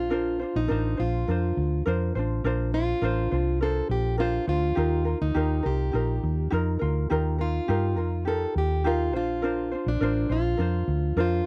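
A dark, round, punchy hollow-body short-scale electric bass, played with the fingers, sits up front in this easy-going, heartfelt acoustic pop excerpt at 103 BPM in Bb major, beneath a full-bodied, plugged-in jumbo steel-string acoustic guitar fingerpicking the melody and a light, thumb-plucked ukulele accompaniment, as the chords move from Bbadd9 to Ebadd9 and back with a touch of reverb in a dry, close 1970s-style studio sound.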